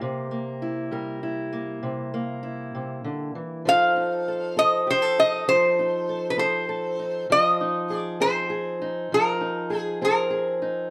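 A moderate small-room reverb frames this laid-back, swaggering acoustic country blues excerpt at 66 BPM in 12/8, where a dark, boxy parlour steel-string guitar fingerpicks the accompaniment from the start over C7 and F7 to Fm7, and at 3.7 seconds a metallic, nasal lap resonator guitar, played with slide and fingerpicks and set in plate reverb, carries the melody up front.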